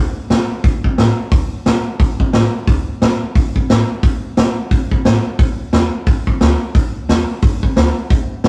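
Upbeat and rollicking, this short rockabilly excerpt moves with a light swing in 4/4, cut from a longer piece. A plucked upright bass with gut strings sits in the background, woody, dark and thumpy, while from 0.3 seconds a vintage drum kit of hi-hat, punchy kick and medium-tuned snare plays up front with a mid-forward, rolled-off top. The rough rehearsal-room sound carries light reverb and tube saturation.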